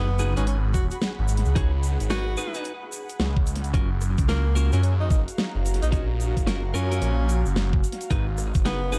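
A swirling, saturated detuned saw bass with phaser and overdrive sits up front in this playful, funky glitch hop excerpt, joined at 0.4 seconds by a tape-colored dubstep kit with a huge snare, bright hats, rim clicks and analog delay, and at 0.7 seconds by a knocking electronic kick. Over a swung groove moving between G#m7 and F#maj7, a clear, close-miked tenor saxophone plays a jazz-style solo melody with vibrato and scooped notes, while a clean, compressed electric guitar adds picked stabs that pump under sidechain. A mellow, ethereal pad with ensemble chorus and reverb, a grainy egg shaker and a barely audible impact near the start round out an echo-heavy mix dusted with vinyl crackle.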